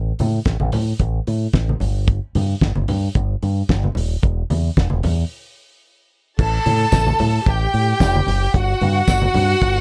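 A fingered electric bass opens this short disco cut, its envelope filter giving each note a bright, punchy bite up front, and a damped 70s drum kit arrives almost at once with a fat snare, a tight kick and a rolled-off top on crash, hi-hat and snare. Low-tuned congas sit in the background with a compressed, saturated edge, pushing the driving, danceable groove along at 111 BPM in a straight 4/4. The opening stretch runs over an unharmonised bass line before a brief break at 5.3 seconds. At 6.4 seconds a rich studio violin section enters close and focused, its bowed vibrato adding a lush second line as the harmony arrives on a Fadd9 chord at 7.5 seconds. A jingly tambourine joins quietly behind at 6.9 seconds, and the whole recording stays dry, with little reverb.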